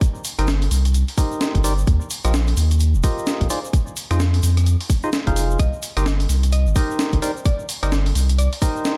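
A saturated sub bass sits up front, deep and thick, with sidechain pumping, alongside an electronic kick that is tight, tape-touched and re-recorded in a large room. This is a late-night, moody slice of two-step UK garage at 129 BPM in C minor, with a swung sixteenth feel cut from a longer piece. A gritty, pitched-up breakbeat kit supplies hi-hat, rim click and a high-tuned snare, while a grainy egg shaker sits close but in the background. From 0.4 seconds a hollow, nasal organ stab with chorus and delay carries a filter sweep across the whole passage, moving through Cm7, Eb69 and Fm7 before returning to Cm7. At 5.6 seconds a woody, round mallet-like pluck enters with a short melody, softened by its own chorus and delay. The production is dark, set in a digital ambience.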